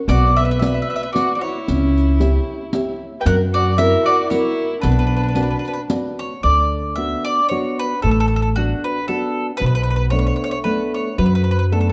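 A dark, warm recital-hall sound frames this wistful, passionate Italian folk serenade excerpt in a swung three-beat lilt, where an up-front bowl-back mandolin carries the picked, double-string melody over classical fingerpicked nylon-string guitar and a woody, thumpy gut-string upright bass, while a rich violin with smooth vibrato adds a bowed second line until 5.8 seconds and a close, dry riq with bright jingles, played with soft hands, drops out at 6.3 seconds.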